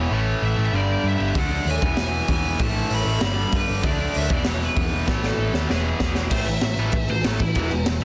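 A dark, high-gain lead guitar with distortion and delay carries the melody through this energetic, upbeat punk rock excerpt at 193 BPM in A major, over a bright, compressed overdriven guitar riff, a tight distorted guitar riff in the background and a round, hollow-body picked bass, while a gritty, up-front garage drum kit with a high-tuned snare, punchy kick and dark cymbals enters at 1.4 seconds in half time and plays a fill from 5.1 seconds before a lead guitar solo takes over at 6.3 seconds, in a dry, dense, heavily limited mix.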